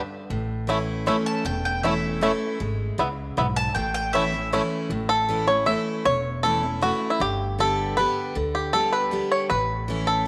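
A bright, full-bodied picked steel-string acoustic guitar opens this rustic, driving bluegrass passage in three-four time, with a woody, thumpy pizzicato upright bass entering at 0.3 seconds. A twangy, percussive bluegrass banjo played with fingerpicks soon carries the melody up front. From 1.3 seconds a mandolin adds stabs, its double strings giving a bright edge during its solo spot. At 4.9 seconds the banjo takes over the solo while the guitar and bass continue underneath. The harmony moves from A to a rootless E/G#, back to A, then to G and home to A again. A moderate echo chamber reverb and a small room ambience surround the playing, and the clip is cut from a longer piece.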